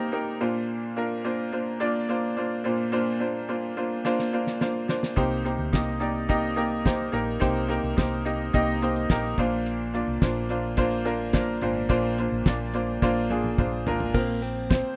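A bright, slightly detuned upright piano opens this dramatic, bittersweet piano-driven pop excerpt at 107 BPM, its woody, worn tone up front with audible action noise as it moves between Bbadd9 and Cm7 in a rough home demo mix with light room ambience. A damped 70s drum kit enters with a fill at 4.0 seconds, its fat snare and tight kick sitting dry and close, and a round, punchy hollow-body bass follows at 5.2 seconds. Another drum fill at 13.0 seconds leads to a brief clean, scooped electric guitar figure at 14.1 seconds over a Bbsus2 chord.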